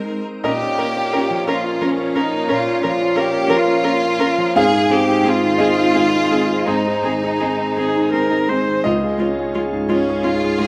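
An intense, vibrato-laden chamber violin section carries the longing melody up front in this melancholic neoclassical piece in 6/8, played rubato at 54-60 BPM in Bb dorian, joined by an intimate concert grand with deep bass and audible action noise, a single expressive cello with portamento in the background, a rich, close viola entering at 0.4 s, and a calm, detuned organ-like pad with ensemble chorus and built-in reverb sustaining chords, the ensemble set in a moderate scoring-stage reverb over Bbm, Ab and Db.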